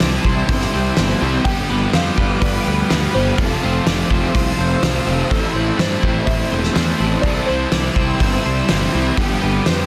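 A growly, fuzz-driven picked bass sits up front beside a loose, roomy indie drum kit with a fat snare and punchy kick, anchoring this melancholic, hazy shoegaze and dream pop fragment cut from a longer piece, moving through C6, G7, Fmaj7 and Am7. An overdriven guitar riff bathed in reverse reverb and a thick, distorted fuzz guitar with analog chorus churn alongside twangy clean arpeggios carrying chorus and delay. A silky, detuned sawtooth string pad with ensemble chorus and phaser glows in the background, while a dry, woody folk marimba with medium mallets traces a rustic, delayed melody, all pressed into a dense, heavily limited modern master with studio reverb.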